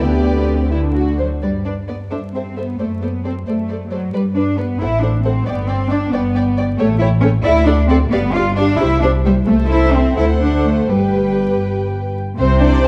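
This quick classical-period movement for string orchestra, cut from a longer piece, moves in 6/8 with a rubato feel and a spirited, cheerful mood. The first violins carry the melody in an intimate, lightly vibrating sul tasto voice, yet they sit in the background, while a darker second violin section traces a close, soft-edged second line beneath them. Violas fill in the accompaniment with a woody, lush tone and a smooth top, and the cellos and double basses share the bass up front, the cellos rich and floating and the basses pure and sombre. The harmony moves through tonic, subdominant and dominant chords with passing diminished and seventh colours, arriving at a G chord at 10.9 seconds. A moderate scoring-stage reverb and a dark, warm production touched with vinyl crackle give the whole 12.9 seconds an aged, rounded sound.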